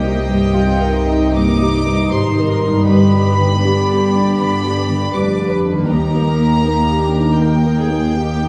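The rhythm flows freely in a rubato 4/4, giving this sorrowful, longing piece of cinematic orchestral scoring an unhurried, breathing pulse. Two violin sections carry the music throughout the 8.5 seconds: one sings the high melody with a pure, floating, soft-attack sound, while the other traces a second line beneath it, both played sul tasto and close. In the background, a dark, mellow concert grand piano provides accompaniment with a deep low register, joined by a woody, lush viola section with vibrato and a smooth top. The bass is carried by a warm, floating cello section and a rich double bass section, both bowed sul tasto. A very quiet fingerpicked concert harp adds ringing arpeggios as the harmony moves from Cm7 to G at 2.9 seconds and to Eb at 5.9 seconds. A moderate scoring-stage reverb surrounds the ensemble, and the passage is cut from a longer piece.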